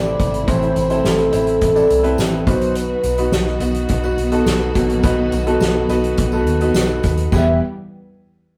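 A brief passage cut from a longer piece of earnest, driving piano-led pop opens at once with a concert grand piano, a horn-like synth lead, a string section and a muted electric bass sounding together at 105 BPM in a straight 4/4. The piano sits up front with a natural tone and a deep bass register, laying down accompaniment over chords that move from A minor to B and then settle on E minor at 7.3 seconds. Carrying the melody is a mellow, round synth voice with a sawtooth edge, a soft attack, vibrato, chorus and a filter sweep, while lush, bowed strings hold sustained chords in the background with expressive vibrato. The dark, foam-muted bass has a punchy, amped character, and from 0.2 seconds a soft-mallet drum kit joins with a fat snare, a punchy kick, hi-hat and crash, alongside a jingly tambourine tucked far back. The whole take has the rough feel of a rehearsal room, with a moderate small-room reverb.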